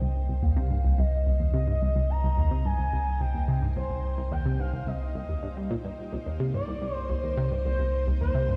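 A tight, driving sequenced synth riff with detuned sawtooth bite, phaser and tape echo sits up front over a deep, round sine sub bass holding C2, while a lush vintage string machine fades in across the full 8.6 seconds beneath a smooth, mellow synth lead that sings with vibrato, chorus and shimmer reverb, all on a single Cm7 chord in this mysterious, cosmic ambient fragment in C minor at 108 BPM, cut from a longer piece and set in a dark production with moderate concert hall reverb.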